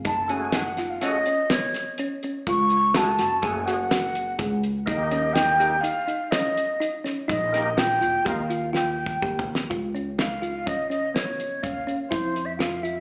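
In a straight 5/4 at 124 BPM, a dry, damped 70s drum kit with a fat snare and tight kick drives this bright, intricate progressive instrumental in Db mixolydian: a breathy wooden flute carries the up-front melody with slapback and tape echo over tine-like FM synth-pluck arpeggios with chorus, a woody, growly pizzicato upright bass, and a gritty overdriven tonewheel organ on slow rotary speaker that drops out at 8.4 s, before a drum fill from 8.7 s leads into a new section at 9.7 s, the band heard through a club PA with plate reverb and a small-speaker sound.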